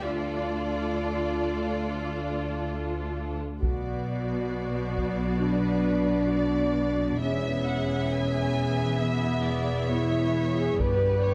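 A warm French horn section enters at 3.6 seconds with sustained chords over a dark, heroic orchestral film cue in B minor, moving at a stately 67 BPM in straight 4/4. Beneath it, the dark double bass section sits up front with a soft attack, portamento and expressive vibrato, joined by a rich, bowed cello section on the bass line. Lush, smooth violins carry the melody and a second line, while the violas supply even, vibrato-laden accompaniment. Solo taiko drums struck with heavy sticks punctuate the texture with a close, acoustic impact, arriving alongside the horns and returning at 10.8 seconds. The harmony moves from D minor through B minor and E to G, and a moderate scoring-stage reverb gives this cut from a longer piece its grand, cinematic space.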